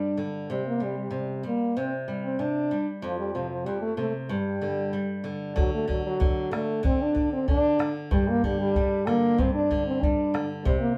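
Andean folk in a festive yet melancholic vein, this short cut from a longer piece moves in a straight two-beat metre. A solo French horn carries the melody up front in a classical style, its mellow, distant, roomy tone set in plate reverb. Beneath it, a fingerpicked acoustic flamenco guitar plays the accompaniment with fresh strings and a warm body, moving through C5, F5 and G5 chords. At 5.6 s the opening passage begins again as a bombo enters, deep, dark, close and dry, while the harmony pauses before G5 returns at 8.1 s. The ensemble sits in a wet studio ambience, heard from further back in the room.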